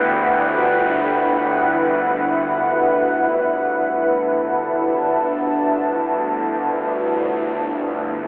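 Heard through a narrow, telephone-like filter and drenched in a huge, wet reverb with a seven-second tail, this brief fragment of dark ambient drone feels desolate and unsettling. A deep, moody pad holds sustained chords, resting on an E minor add nine, across the full 8.3 seconds, its detuned sawtooth layers thickened by a sine sub octave, chorus and its own reverb. Beneath it, a bowed-like drone sits low and tense, with a string-like, bright sawtooth edge, a noise layer, vibrato and a phaser colouring its reverb-soaked tone. Both parts rise on slow attacks and fade on long releases, sitting up front even within the cavernous space. The pad is the louder of the two, casting a shadowy veil over the drone's sharper grain.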